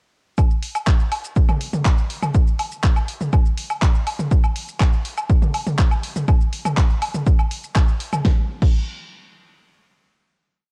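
A dry, tape-saturated home cassette recording carries this short, hypnotic and dramatic techno piece in a straight 4/4, playing as a single drop from 0.4 seconds before a final hit at 8.2 seconds. An analog-sounding, punchy electronic kick sits up front in a steady four-on-the-floor. Behind it, a layered deep house kit re-recorded in a small room adds a fat snare, handclaps, shaker, low woodblock, mid toms, open hi-hats and crash, with sidechain pumping on the hats, toms, cymbals and percussion until both parts stop at 8.8 seconds.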